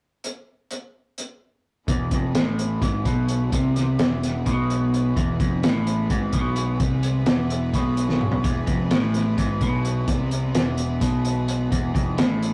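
A cloth-damped, thuddy drum kit opens this dark, hypnotic psychedelic rock excerpt alone, its fat snare and tight kick sounding muffled and gritty in a small room at 256 BPM in 7/8. At 1.9 seconds the band joins on an E chord: a bright, twangy electric guitar at the edge of break-up plays a phased riff up front beside a round, punchy fuzz bass, while a rich chamber string section holds earthy, bowed chords with light vibrato in the background. A drum fill arrives at 8.1 seconds, and the whole take carries the rough, saturated character of a rehearsal-room recording with light reverb.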